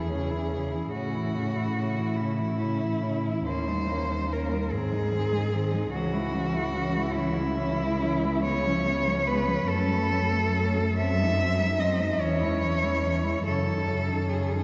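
Drenched in a long cathedral reverb with a dark, warm production, this fragment of an elegiac, solemn classical piece for cello ensemble moves in a rubato 6/8 at 48 BPM in C# minor. Four bowed cellos with vibrato play throughout: a focused, up-front melody on top; a smooth, even second line set at a distance; a woody accompaniment in the background; and an expressive, rich bass up front with soft attacks and portamento. The harmony drifts from C#m/E through A, D#7 and G# back to C#m, then on to C#7, F#m, G#7/F# and C#m/E, closing on D#m7b5/F# at 13.5 seconds.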